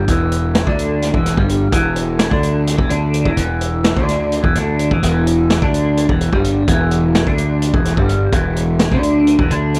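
Psychedelic rock in a lopsided 7/8, trippy and hazy, built on a bright, twangy twelve-string electric guitar riff, double-tracked and phased, sitting up front over an Em7 chord. A fuzzy, overdriven fingered electric bass holds the low end, while a vintage drum kit with a punchy kick, medium-tuned snare, hi-hat and rolled-off top enters at 0.1 seconds. Small room ambience frames this short excerpt cut from a longer piece.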